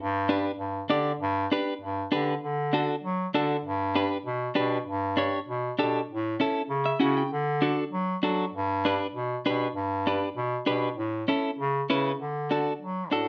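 In a brisk, straight four-beat latin groove, this sunny, festive snippet of a longer piece sets a bright, vintage-toned bass clarinet up front carrying the bass line in a classical style, while a clean, compressed electric guitar enters at 0.3 seconds with picked accompaniment and slips in a short fill at 6.7 seconds, all wrapped in a moderate large-studio reverb as the chords cycle through G, D and A.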